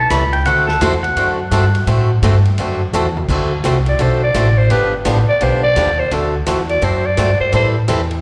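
A raspy, growling clarinet with light vibrato and slapback echo takes the spotlight from 3.9 seconds in this playful, cheerful western swing clip at 170 BPM, its vintage jazz tone sitting up front. Before it, a twangy, clean pedal steel guitar with slapback echo carries the opening melody with fingerpicks and slide, stopping at 1.8 seconds, while a woody pizzicato upright bass and a boxy, picked acoustic guitar with finger squeak swing up front over a big-band drum kit in the background that plays a fill just before the clarinet's turn. The chords move through D9, D7, G9 and Am7 in D mixolydian, heard as a live gig through the venue's sound system with recital hall reverb.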